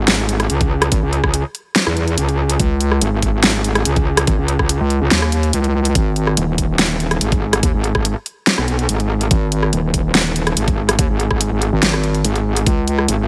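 A half-time groove in 4/4 drives this heavy, menacing wobble dubstep excerpt, cut from a longer piece. An overdriven, layered dubstep drum kit sits up front with hi-hat, rim click and a huge snare, and an electronic kick with a knocking, overdriven punch joins at 0.6 s. Two wobble basses carry the low end: a metallic, aggressive FM bass with chorus and overdrive starts the track, and a mellow, square-wave wobble bass, saturated and compressed, comes in at 0.9 s and sits slightly louder in the mix. Both basses have a fast attack and sustained, wobbling tone, and the harmony moves from C#5 to G#5 at 6.0 s before returning to C#5. A digital ambience frames the dense, up-front mix.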